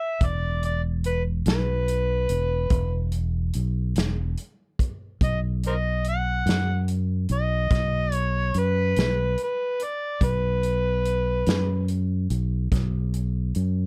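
An overdriven, gritty harmonica opens this swaggering, rollicking slow blues excerpt in 12/8 at 48 BPM, playing an up-front, jazz-style solo full of vibrato, tongue slaps and scooped notes until 11.9 s, while a round, dark fingered electric bass and a natural country drum kit with a punchy kick and medium-tuned snare enter at 0.2 s over an E5 chord that moves to B at 5.2 s, all in a dry, dark production.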